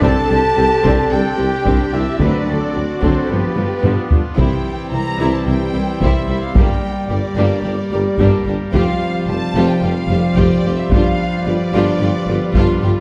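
A full orchestra and a close, dry taiko ensemble struck with heavy sticks open this epic, dramatic film-score excerpt together, at a straight 110 BPM in 4/4. Lush bowed violins carry a soft-attacked, expressive melody with vibrato over a second violin line, a focused viola section in the background and a floor of smooth, even double basses, expressive cellos and a punchy, distant tuba. Sustained chords come from a mellow trombone section, a very quiet, roomy French horn section with light vibrato, and a brassy, bright pipe organ trumpet stop with baroque voicing and audible chiff. A vintage-toned solo trumpet adds stabs until 4.1 seconds, and very quiet timpani with medium mallets enter briefly at 2.2 seconds. A drum fill leads into the second section, where the harmony settles into G dorian from 4.4 seconds, moving through C, Gm, Fsus2 and G7. The dark production sits in a reverberant scoring-stage space.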